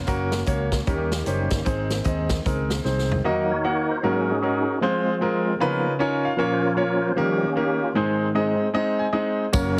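Uptempo gospel at 153 BPM with a reverent, soulful swing, opening with a fat tonewheel organ on slow rotary speaker and chorus vibrato over a very quiet, mellow French horn section, punchy fingered electric bass, an up-front concert grand piano and a swinging big-band drum kit with a punchy kick, until a drum fill at 2.8 seconds drops the horns, bass and drums out and hands the organ a solo from 3.2 seconds, trimmed with piano fills, before bass, drums and a close tambourine return at 9.5 seconds, all under light studio reverb and a heavily compressed radio sound.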